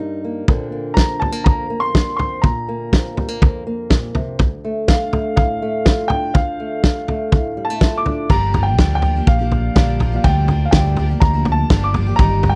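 Wistful and bittersweet, this indie folk excerpt in G minor moves at 123 BPM in a straight 4/4, opening on a dark, boxy fingerpicked ladder-braced acoustic guitar with old strings, joined at 0.5 seconds by a loose, gritty drum kit with a fat snare and punchy kick sitting up front, and at 0.9 seconds by a woody upright piano with long sustain carrying the high melody. At 8.3 seconds the arrangement builds as the old guitar gives way to a shimmering, octave-doubled twelve-string with audible finger squeak and a round, amped picked electric bass, the harmony shifting from Bbadd9 and Dm to Gm7. The sound is dry and close, in the manner of a 1970s studio recording.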